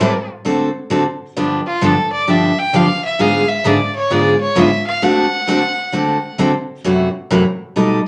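A biting, nasal fiddle with light vibrato carries the swung melody of this cheerful, down-home country fragment until 6.4 s, backed up front by a bright, full-bodied picked dreadnought acoustic guitar whose finger squeaks come through as it plays on to 8.0 s, both set in a wet club reverb over chords moving from D7 through G7 and G#dim7, back to D7, and on to F#m7b5.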